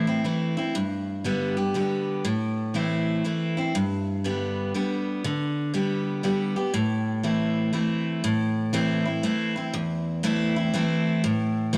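In a lilting 3/4 at 120 BPM with swung eighth notes, this brooding country passage sits in A minor. A lone picked steel-string acoustic guitar carries the whole piece, an auditorium-bodied instrument with a bright, up-front tone spanning E2 to G4. The harmony sways between Am and G, with a new section arriving at 8.2 seconds before the excerpt ends at 11.8 seconds. A light studio reverb gives the guitar some space, while the home cassette recording adds a dusty, intimate grain. Cut from a longer piece, the fragment feels like a quiet moment of reflection.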